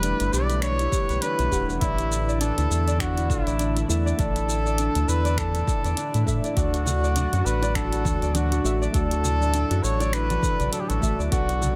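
A light reverb and digital ambience frame this meditative, earthy slice of organic downtempo at 101 BPM in 4/4, with a gentle swing on the 16ths. Up front, a bucket-muted trumpet carries the melody in a veiled, jazz-style voice with vibrato and tape echo. Beside it sits a round analog bass, thickened by tube saturation and pumping with the sidechain, while an electronic kick enters at 0.9 seconds. A thumb-plucked Celtic harp rings out bright arpeggios through a delay, and behind it a nasal, decaying chord stab with chorus and delay and an airy, breathy pad with a slow attack both pulse with the sidechain. The deep house kit adds finger snaps, hi-hat and shaker, a very quiet glassy texture of drifting overtones hovers from 0.6 seconds, and hard-handed bongos and congas join in the background at 6.9 seconds as the harmony moves from Em7 through Asus4 to D.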